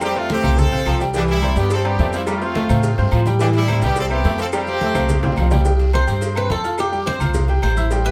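Sunny and joyful, this brief salsa cut from a longer piece races along at 213 BPM in a straight 4/4 in C major, moving through chords such as Fadd9, Cadd9 and Am7. A brilliant, punchy horn section carries the melody with light vibrato and a loose, close-miked edge, while a tight trombone section with a smooth top plays a second line beneath it until the horns drop out around 5.3 seconds and the trombones around 5.5 seconds. A worn yet present concert grand piano, with audible action noise and deep bass, accompanies throughout, and an up-front upright bass gives thumpy, woody pizzicato on gut strings. The percussion sits mostly behind the band: thin-skinned congas struck with hard hands, ringing agogo bells and timbales, a round low-tuned cowbell, and very quiet woody claves, raspy guiro and grainy maracas. After a drum fill, a picked Cuban tres with metallic double strings steps forward for a short solo from 6.0 seconds. 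Moderate studio ambience places the whole ensemble a little further back in the room.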